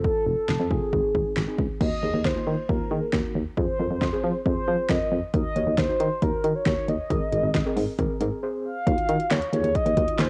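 Synth-pop at 136 BPM in a straight 4/4, this short clip cut from a longer piece carries a melancholic, cool mood through a home-recorded cassette sound with moderate spring reverb and a digital ambience. Up front, a mellow, horn-like sawtooth synth lead sings the melody between Ab4 and F5, its soft attack and sustained tone shaded by a filter sweep, vibrato, chorus, tape echo and cassette tape. A solid FM bass sits alongside it, punchy and round with a fast, decaying attack and a touch of transformer saturation, spanning F1 to F3. The deep house drum kit is punchy and overdriven, with a fat snare, metallic hats, handclaps and a crash cymbal, while muted, felt-like synth keys murmur darkly in the background with tremolo, chorus and a soft noise layer. The chords move from F and Ab through Ebm and Fm to Abadd9, a brief break arrives at 8.4 seconds, and the passage settles on Ebmadd9 at 8.9 seconds.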